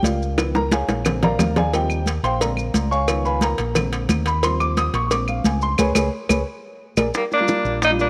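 A dark, woody upright piano takes the lead in this sophisticated, danceable Afro-Cuban jazz passage at 178 BPM, soloing over chords built on Db7, Bb7 and Eb69, with a punchy, round fingered electric bass sitting up front beneath it. Damped, high-tuned congas with a thick skin, low-tuned cowbell and bongos, grainy maracas and claves tucked in the background fill out the percussion. At 7.2 seconds, just before the clip is cut from the longer piece, a breathy, vintage tenor saxophone enters up front, with a raspy, growling trombone on a second line, all set in light small-room reverb.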